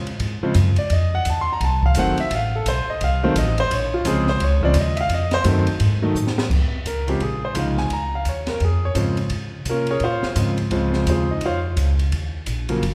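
A clear, up-front concert grand piano carries the melody and takes a solo through the first 6.5 seconds of this moody, smoky Bb minor jazz piano trio excerpt at a swinging 171 BPM, backed by a woody, growly pizzicato upright bass and an open acoustic drum kit with a high-tuned snare and boomy kick whose fill at 6.2 seconds leads into the second section, all set in the long, wet reverb of a church or concert hall.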